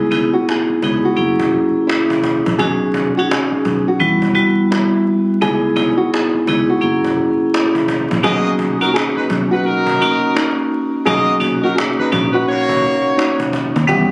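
Soulful and nostalgic, this swung boom-bap hip-hop fragment sets a small, dark, thumb-plucked nylon-string guitar melody, run through filtering and analog delay, over ringing, bright vibraphone struck with hard mallets and given a cassette-tape tint, placed up front among a round, foam-muted fingered electric bass and a woody, distant cajon with faint snares. At 8.2 seconds the harmony opens onto Bmaj9 and a clear, punchy horn section with vibrato enters with tight stabs until 13.4 seconds. The whole carries a phone-in-the-room character, with small-room and club reverb and vinyl crackle.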